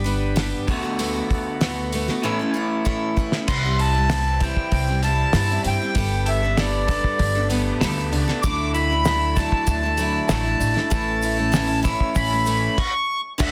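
A dense, heavily limited modern mix with light reverb frames this warm, nostalgic folk rock and heartland rock excerpt in D major at 97 BPM. It opens on bright picked steel-string acoustic guitar, a slightly broken-up, lo-fi electric guitar riff through a small old amp with spring reverb, and a woody pizzicato upright bass up front. Beneath them, a very quiet, clean tonewheel organ with key click and slow rotary speaker holds chords, while a cloth-damped, thuddy drum kit adds dark cymbals, a fat snare and a tight kick. After a drum fill, a reedy accordion with slow beating and slapback echo carries the melody from 3.5 seconds over chords moving from C through Gadd9 and Dadd9 to A, a grainy, mellow tube shaker joins in the background at 8.4 seconds, and the band hits a stop at 12.8 seconds.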